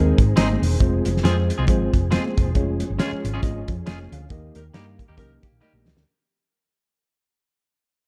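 Danceable, warm uptempo 1960s-style soul at 137 BPM with a swung 4/4 feel, moving through Ab, Fm, Db/F and Eb in a short fading cut from a longer piece. A cloth-damped, thuddy drum kit with a fat snare and tight kick sits up front beside a round, dark hollow-body picked bass, while a worn, slightly out-of-tune tine electric piano comps and a lightly overdriven tonewheel organ holds background chords with key click, chorus vibrato and slow rotary speaker. A twangy clean electric guitar adds spring-reverbed stabs and high-tuned congas sound faintly underneath; a band accent lands at 4.3 seconds, bringing a faint, edgy saxophone section line with tape echo and a distant, compressed archtop guitar riff before a drum fill at 5.6 seconds, all in a small, dark room sound.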